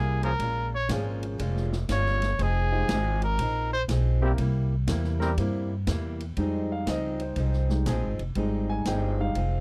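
A forceful, clear trumpet opens this brassy big band swing excerpt with scooped notes and light vibrato, playing the melody until 3.8 s, while a woody, thumpy upright bass and a punchy-kicked drum kit in a big room keep the swing moving underneath. A boxy, picked acoustic guitar with audible finger squeak and a trombone section holding sustained chords fill out the harmony. A grand piano with deep bass and long sustain enters at 0.9 s and takes the solo at 6.4 s, all captured in a dry, close 1970s-style studio sound.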